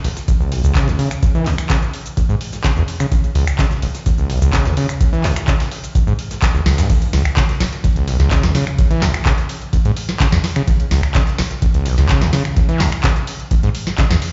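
A straight 4/4 pulse at 127 BPM drives this gritty, trippy acid house excerpt in C# minor. A deep analog kick pounds away, joined by a booming drum machine with a crisp snare, metallic hi-hats, handclaps, finger snaps and crash cymbal, all tape-warm and carrying a short room on the snare, clap and hats. Further back, an overdriven, compressed breakbeat-style kit adds a medium-tuned snare and ride cymbal, its cymbals pumping to the sidechain and thinned by high-pass filtering. The overdriven acid bass riff leads the mix, squelchy and resonant with a sawtooth edge, fast attack, a filter sweep, distortion, digital delay and sidechain pumping. A grainy, bright cabasa rattles close and dry in the background until a drum fill at 6.7 seconds sets up the drop at 6.9 seconds. The whole track sounds played back on a big system in a bare stone room, with moderate reverb and nothing above 7.6 kHz.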